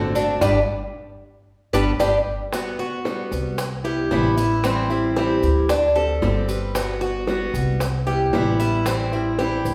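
Heard from further back in a large studio, the recording is bathed in a wet reverb that gives the ensemble a spacious, lingering air. This relaxed, danceable fragment of Cuban son and guajira, cut from a longer piece, moves in a straight four-beat feel. Up front, an old ladder-braced acoustic guitar picks a boxy accompaniment on aged strings. Alongside it, a bright, metallic Cuban tres plays arpeggios on its doubled strings, and an upright bass plays woody pizzicato lines underneath. In the background, tight, high-tuned bongos played with soft hands enter at 0.4 seconds as the whole band accents and add a drum fill from 1.7 seconds, while grainy, mellow maracas sit quietly behind them. At 2.5 seconds the harmony settles into a cycling progression of major-seventh and minor-seventh chords, with a suspended seventh chord turning it back around.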